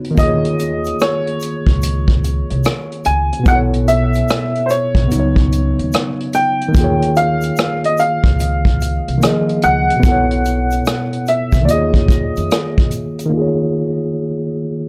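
A worn, slightly out-of-tune tine electric piano opens this dreamy, mellow lo-fi hip hop excerpt alongside a vintage brush drum kit, the keys lightly overdriven through built-in speakers and colored by cassette tape and a low-pass filter. The kit's hi-hat, punchy kick and rim click are played with brushes, with a rolled-off top and 12-bit sampler grit, sitting up front in a studio room over a swung feel. A clear, open upright piano carries the melody in a high register, while a woody, thumpy pizzicato upright bass on gut strings adds dark, tube-saturated weight and a grainy tube shaker stays in the background. The harmony drifts through suspended ninth chords on Eb, B and Db. At 13.3 s the drums and shaker stop, and the electric piano plays alone under a filter sweep until 14.9 s, set in light reverb with a dry, gritty hardware character.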